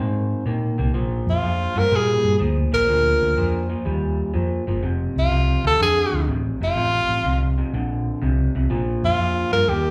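Gritty and swaggering, this short blues cut swings at 124 BPM in Bb mixolydian, with a slightly broken-up, lo-fi electric guitar riff through a small old amp, bathed in lush chorus and slapback echo, over a dark, round, up-front hollow-body bass, and a breathy, mellow tenor saxophone joins at 1.3 seconds with subtone, light vibrato and scooped notes, all heard through a club PA with light reverb.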